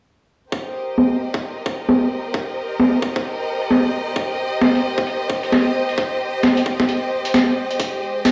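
Soulful, bouncy two-step UK garage with a swung sixteenth-note feel, cut from a longer piece, where a rich, expressive bowed violin section sits up front holding vibrato-laden sustained chords that pump under sidechain, moving from Cm7 to a rootless Fm9 at 7.6 s. Alongside it, a gritty, compressed sampler-style breakbeat kit drives the groove with low-pass-filtered hi-hats and a high-tuned snare, and the drums carry a filter sweep throughout. A tight, layered electronic kick, overdriven and high-pass filtered, plays until 7.9 s, all of it heard through plate reverb and the stone-room reverb of a big sound system in a bare room.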